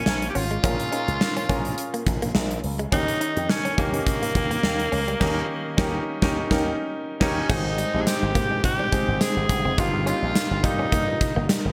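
Riding a lightly swung 16th-note groove in 4/4, this nostalgic, moody 1980s-style pop fragment puts a raspy, gritty tenor saxophone up front, with light vibrato, scooped notes and delay, over a clear baby grand piano, a punchy slap bass with an envelope filter, and a gated drum kit with bright cymbals and a big, airy room sound. A compressed, clean electric guitar riff with subtle chorus and delay sits in the background, and the band hits an accent from 5.2 to 7.5 seconds before the harmony shifts. A very quiet jingly tambourine joins at 7.5 seconds and an ethereal, glassy FM pad at 7.9 seconds, all wrapped in moderate plate reverb and polished digital sheen.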